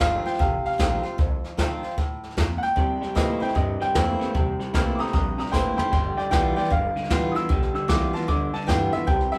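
A swung 4/4 groove drives this upbeat, rowdy rockabilly excerpt, set by a brushed drum kit that sits up front with a boomy kick, a medium-tuned snare, hi-hat and toms, and it drops in a short fill at 5.5 seconds. Underneath, a pizzicato upright bass on gut strings adds a woody, thumpy pulse from further back, while a picked acoustic archtop guitar fills out the accompaniment with a boxy tone and audible finger squeak. A clear, natural-sounding upright piano carries the melody in its upper register over chords moving from F7 to C7 and then G7. At 2.8 seconds an electric guitar through a small old amp joins with a bright, twangy, slightly broken-up riff, its pitch drifting in a warbly way. The whole band sounds as if playing live together in one room, wrapped in a moderate large-studio reverb.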